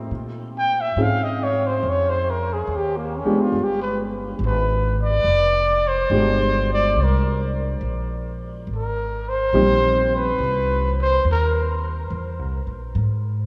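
A breathy, whispered trumpet carries the melody of this smoky, melancholic jazz ballad, its soft-attack, scooped notes and light vibrato sitting up front from 0.6 seconds as it solos over a slow 70 BPM swing in 4/4. Beneath it, a woody pizzicato upright bass holds the low end for the full 13.5 seconds, while a mellow baby grand piano with audible action noise and short sustain comps through chords from Bbm11 to G7b9 and Cm7 until 10.4 seconds. The passage, cut from a longer piece, is bathed in a wet cathedral reverb that places it in a vast, echoing space.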